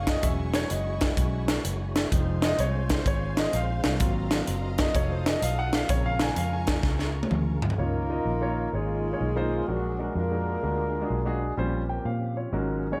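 Opening on an intimate grand piano solo with audible action noise, alongside a very quiet tonewheel organ with key click and slow rotary speaker, lush bowed strings in the background, and a round, punchy muted electric bass, this soulful, jubilant uptempo gospel excerpt swings at 127 BPM in 4/4 while a saturated, gritty fusion kit with a high-tuned snare and tight kick plays until a fill at 6.8 seconds; at 7.8 seconds the strings and drums stop and a mellow, up-front horn section with light vibrato and octave doubling takes the melody, set in light reverb.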